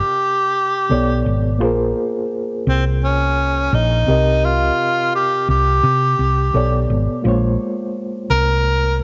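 Lush 1970s-style soul at 85 BPM in 4/4, with a gentle swing on the sixteenths and a silky, bittersweet mood, set in B-flat dorian and cut from a longer piece. A breathy tenor saxophone carries the melody up front from the start, its tone clear and whispered with a soft attack, light vibrato and an intimate, pop-style solo voice. Beneath it, a reedy electric piano plays accompaniment throughout, sounding worn and slightly out of tune through its built-in speakers, its clean tone shimmering with a fast tremolo. At 0.9 seconds a hollow-body, short-scale electric bass enters, fingered and amped, with a dark, round tone sitting up front in the mix. The chords drift through Cm7, Bm9 and Bbm9, returning to Cm7 at 4.1 seconds before sliding down through the same path again, all wrapped in a light studio reverb.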